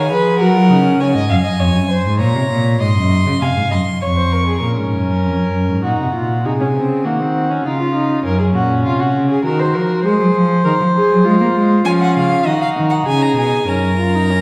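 In a straight 3/4 at 99 BPM, this driving, solemn baroque-style fugue in F# major for string quartet, cut from a longer piece, sets an up-front, close cello bass beneath a dark, biting, distant second violin with light vibrato, while a reedy, smooth-topped viola sounds briefly at the opening and rejoins at 4.6 seconds, just as the rich, gut-string first violin melody falls silent until 11.8 seconds, all four players in period style within a reverberant recital hall heard from further back.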